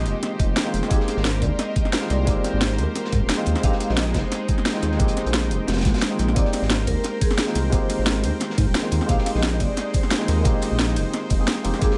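A dry, dull-topped mix carries this uplifting liquid drum and bass fragment at 176 BPM, with a deep, rumbling detuned saw bass and a knocking, overdriven electronic kick up front. A cracking, bright-hatted drum and bass kit rides over a gritty, saturated breakbeat kit tucked in the background, while a lush, warbling pad with chorus and sidechain pumping holds Bb13sus4 and Abmaj9 chords alongside a worn, slightly out-of-tune tine electric piano with digital delay. A metallic, ringing vibraphone with fast motor vibrato and delay sings the melody from afar, and a very quiet electronic swell surfaces at 5.9 seconds.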